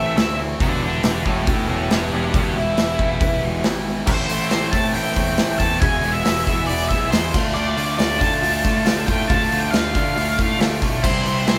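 A dark, fuzzy octave-fuzz lead guitar solos over the opening 4.1 seconds of this swaggering, gritty classic rock excerpt in A minor at 138 BPM, backed by a very quiet, woody upright piano with audible action noise, two bright overdriven rhythm guitars (one distorted electric, one raw garage) sitting back in the mix on riffs, and a punchy fuzz-toned picked bass, while a boomy, up-front rock drum kit with bright cymbals joins at 0.2 seconds and a jingly tambourine slips in barely audibly at 4.1 seconds, the whole band playing live together in a stone room.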